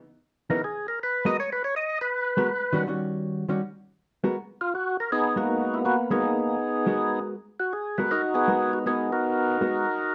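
Swinging, bluesy late-night jazz excerpt in which a percussive tonewheel organ with key click and a slow rotary speaker carries the melody and takes a solo through the opening 4.4 seconds, while a dark, fingered hollow-body electric guitar gives compressed, clean accompaniment over minor ninth and altered dominant chords, both parts up front in a moderate studio reverb.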